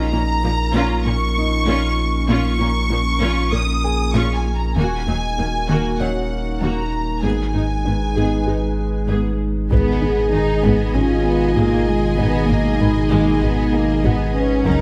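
A deep, saturated sub bass sits up front in this vast, relentless stretch of hybrid orchestral and electronic film score, anchoring a lush bed of vibrato-rich violas and cellos, a warbling lo-fi pad with chorus and reverb, a squelchy resonant pluck spinning arpeggios, and a felt-muted upright piano whose soft tape-echoed notes and audible action noise hover in the background. A clear, distant violin section carries the melody until 9.1 seconds, and at 9.7 seconds the weight grows as a second violin line, mellow French horns and trombones holding chords, background double basses and a brief burst of hard-stick taiko drums join in. Everything is captured with close, detailed microphones in a light reverb, moving through A#m, D#m and G#m in a passage cut from a longer piece.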